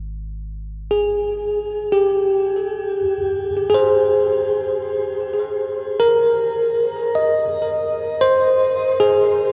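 Drifting in free time, this luminous ambient fragment in Ab major opens on a round, deep analog bass with tube saturation that sustains on a low Ab1 until 2.9 seconds, while from 0.9 seconds a bell-like, bright tine electric piano plays up-front arpeggios between G4 and Eb5 through tape echo and shimmer reverb, settling onto an Abadd9 chord at 3.0 seconds, all wrapped in a huge, wet reverb and the warbling pitch drift of worn cassette tape.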